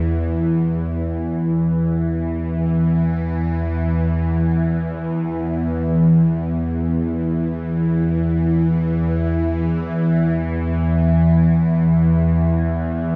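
A tense, string-like bowed drone, bright and sawtooth-edged with detuned unison voices and a noise layer, sits up front alone from 0.0 to 13.2 s between E2 and E3, its slow attack, long sustain and long release colored by vibrato, phaser and delay inside a huge wet reverb with an 8.2 s tail, giving this ominous, vast dark ambient fragment in free time a cassette-tape grain.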